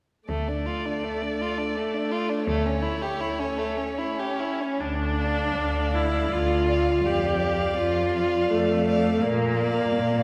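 A church acoustic with a long, wet reverb surrounds this slow, elegiac excerpt of a romantic string quartet movement in D minor, moving at about 70-85 BPM in a rubato triple metre. From 0.3 s a single violin carries the yearning melody with soft attacks, vibrato and expressive portamento, while a second violin plays a smooth, even, close line beneath it. A clear, focused viola stands up front in the accompaniment, and a rich cello bass adds its own portamento over harmonies that shift from D minor toward B-flat major by the close at 10.2 s.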